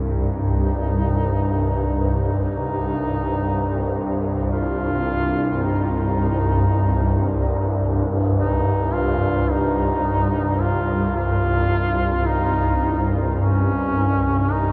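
Drenched in a huge, cavernous reverb that suggests a vast, echoing space, this desolate and unsettling dark ambient excerpt sets a swarming, detuned, wave-folded granular drone, slow to bloom and long to fade, against a vintage-toned, warm folk-style duduk solo with vibrato and delay that fades in from 0.1 s across the 14.7 s passage.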